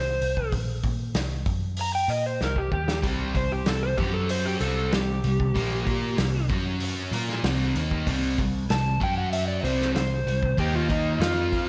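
A big arena sound with a lush hall reverb frames this swaggering, driving slice of blues rock and southern rock, cut from a longer piece. A dark, overdriven slide guitar carries the melody up front with slapback echo, over a dark, round, foam-muted electric bass and a vintage acoustic drum kit with a pumping small-room character and a rolled-off top. After a drum fill from 2.4 to 3.0 seconds, a sludgy, double-tracked distorted guitar enters at 3.0 seconds, adding an up-front picked riff with its own overdrive and slapback echo.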